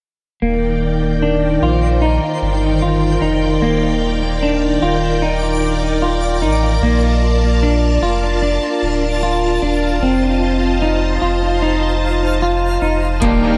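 Dream pop in a blissful, dreamy mood, this excerpt opens at 0.4 seconds with shimmering vintage string-machine violins holding sustained chords over a round, deep sub bass, while a clean, dark semi-hollow electric guitar plays arpeggios through lush chorus and dub echo, moving from Ebmaj7 to Bbmaj7 and F7. From 1.5 seconds a twinkling granular texture with an octave-up shimmer sits in the background, and at 13.2 seconds a bright, overdriven garage guitar with tremolo and a booming analog drum machine with a deep kick and metallic hats appear briefly. The echo-heavy mix carries light reverb.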